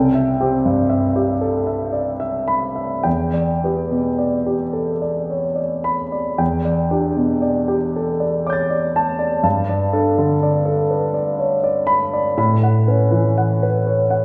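A clear, present grand piano with long sustain sits up front yet is heard from further back in a wet recital hall, playing a mysterious, nocturnal impressionist solo in E minor at a slow, rubato 35-42 BPM in 6/8, spanning C2 to A6 through Cmaj7, Em7, Gadd9 and A69 harmonies across two statements of the same section, one beginning at 6.4 seconds, in this 14.2-second passage cut from a longer piece.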